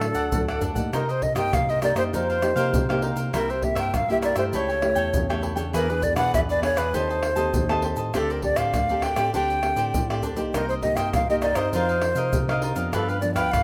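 Samba and choro blend in this lively, yearning fragment cut from a longer piece, set in a straight 4/4. A breathy metal jazz flute carries the melody with vibrato, a soft attack and lifted highs, its slightly unsteady tone giving the line a human, searching quality. Beneath it, a bright, crisp picked cavaquinho and a full-bodied, fingerpicked nylon-string guitar with a deep classical character fill out the accompaniment, while a mellow, clean tine electric piano played through built-in speakers supplies the bass. Pandeiro, tamborim, egg shaker and a deep surdo sound acoustic, as if in a small room, and a short drum fill at 0.5 seconds leads into the main passage at 0.9 seconds. The harmony moves through chords such as Cm7, F9sus4, A7/C#, Am7b5/Eb and D7sus4 before settling on G7, all captured in a rough home demo mix with light reverb and studio ambience.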